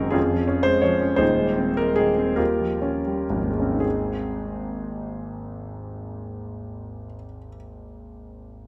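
In a 6/8 with generous rubato, the pulse floats between 37 and 59 beats per minute in dotted quarters, easing into a slowdown over the opening 3.8 seconds. This brief romantic character piece for solo concert grand piano sits in Ab major, tuned to A4 = 441 Hz, and carries a warm, hopeful mood. The harmony moves from Db/F through Ab/Eb to a lush Eb9 before settling onto Ab at 3.8 seconds, where a new passage begins and carries through to the close of this fragment at 8.7 seconds. The piano spans Eb1 to Db5, its deep bass anchoring a natural, intimate tone heard up front, with the mechanical action noise of the instrument clearly audible. A moderate concert hall reverb with a 2.3-second decay adds space around the up-front sound.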